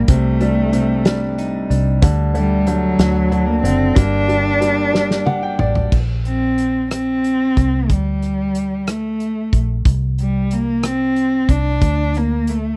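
Aching and dramatic, this brief cut from a longer six-eight pop ballad moves in a slow, straight lilt. A single bowed cello carries the melody throughout, up front with a rich, nasal, boxy tone and vibrato, while a dark, round, foam-muted electric bass sits close beside it with a punchy, amped sound. A loose acoustic drum kit in a small room gives the track its weight, with a fat snare, tight kick, dark cymbals, rim clicks and toms, all rolled-off on top and mid-forward. A bright, woody upright piano and a clean, twangy, compressed electric guitar picking arpeggios in the background fill out the opening, and both drop away near 6 seconds after the piano and drums play a fill from 4.9 seconds. The dry, close studio sound has a 1970s character, and the harmony moves through suspended chords to a stretch near 9.9 seconds where chords fall silent, before settling on a bare power chord.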